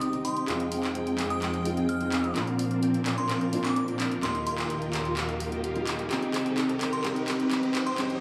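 A straight pulse drives this short cut from a festival progressive house build-up, with a layered big-room electronic kit whose handclaps and hi-hats run through a drum fill for the full length. Set back in the mix, a huge, detuned supersaw plays a riff under a filter sweep and analog delay, while a boxy grand piano with long sustain and its own delay adds accompaniment beneath. Lush bowed strings hold sustained chords with soft-attack vibrato, moving through Fm7, Bbadd9, Ebadd9 and Cm. From 0.2 seconds, a glassy, crystalline FM synth bell carries the high melody with chorus and delay, and a very quiet riser enters at 0.5 seconds. The mood is anthemic and uplifting, and the dreamy mix is soaked in plate reverb over a small room ambience.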